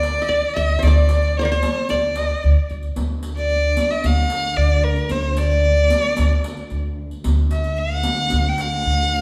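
A passionate Arabic maqam ensemble opens with a rich, boxy solo violin carrying the melody up front, its bowed line full of vibrato and expressive portamento. Beside it, a bright-edged qanun played with fingerpicks adds a second line from its triple strings, and it falls silent at 2.9 seconds. Underneath, a pizzicato upright bass with gut strings holds a woody, thumpy low D, while a distant riq shimmers with bright jingles. At 3.0 seconds a dark symphonic cello section enters on a lush, smooth-topped bowed drone, deepening the low end beneath the violin. The band plays live in one room, bathed in generous studio reverb, giving this brief fragment of a longer piece a spacious, warm feel.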